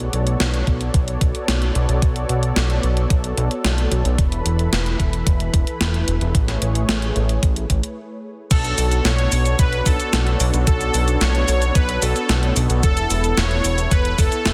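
A straight, steady four-beat groove drives this nostalgic, forward-pushing synthwave excerpt, carried by a gated 80s digital drum machine whose snare, hi-hat, cabasa and crash cymbal carry a punchy gated reverb and a tape-softened, small-room character, joined at 0.7 s by an overdriven, thumpy electronic kick. Underneath, a fat, thick analog bass built from detuned sawtooth tones sits up front, with fast-attack, decaying notes, a filter sweep and sidechain pumping. A smooth, mellow analog pad holds sustained chords with a soft attack, long release and chorus, breathing with the same pumping as it moves from Bm7 through Esus4 to Amaj7. After a brief stop around 8.0 s, a soft supersaw melody enters at 8.5 s, its unison-detuned, gently glowing lead trailed by digital delay as the chords return to Bm7 and Esus4. Light reverb and a digital ambience frame a dense, heavily limited modern master.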